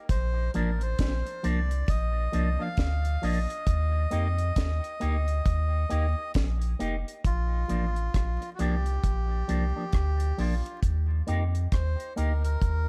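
Uplifting and laid-back, this roots reggae excerpt moves at 67 BPM in Bb major with a swung sixteenth feel, shifting between Bb and Eb chords. A round, soft dub sub bass and an up-front, dry drum kit with a high-tuned snare, tight kick, hi-hat and rim click form the foundation, while a twangy, clean electric guitar through an envelope filter, with spring reverb and tape echo, enters at 0.5 s. A reedy, breathy melodica with tape echo carries the melody and takes a solo from 7.2 s, framed by a dark production with light reverb and vinyl crackle.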